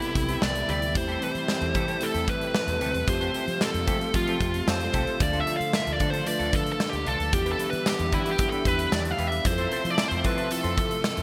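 A bright, digital 1980s-style production sits in a lush hall reverb, framing this short, urgent and dramatic pop passage at 113 BPM in a straight 4/4. Up front, a dark, high-gain lead guitar carries the melody through distortion and digital delay, while a big rock drum kit with a punchy kick, medium-tuned snare, hi-hat and tambourine booms through gated reverb. A bright, amped fretless bass comes in at 0.2 seconds, and a mellow tine electric piano, clean through its built-in speakers, fills in the accompaniment with a lush chorus. Further back, a thick, warbling vintage unison pad holds sustained chords, and a fingered electric guitar at the edge of break-up plays a riff through analog chorus and delay. The chords move from Cmaj7 through Am7/E, Fadd9, Dm and Em7 to Fmaj7, and the band hits an accent from 3.1 to 5.2 seconds, where fat, brassy, detuned sawtooth synth stabs with a filter sweep flash in briefly at 4.3 seconds.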